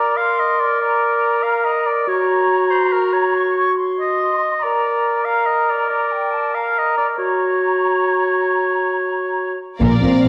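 An up-front oboe and a soft-attack clarinet, alongside a distant, mellow flute section, build over shifting Bb and Gb harmony for nearly ten seconds in this soaring, adventurous cinematic fragment in 12/8, before a brief full chord at 9.8 seconds brings in a dark French horn section, lush bowed violins, violas, cellos and double basses, and timpani struck with medium mallets, all set in a scoring-stage reverb.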